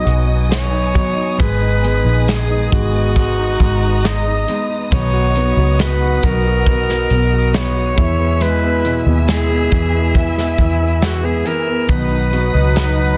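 Emotional and hopeful, this slow pop ballad excerpt sets a raspy, growling alto saxophone melody up front over mellow, distant French horns, a present grand piano, lush bowed strings with expressive vibrato and portamento, full-bodied picked acoustic guitar arpeggios with digital delay in the background, a round, foam-muted vintage electric bass, an airy country drum kit with a punchy kick, and a very quiet, jingly tambourine entering at 0.5 seconds, all within a dense, heavily limited modern master.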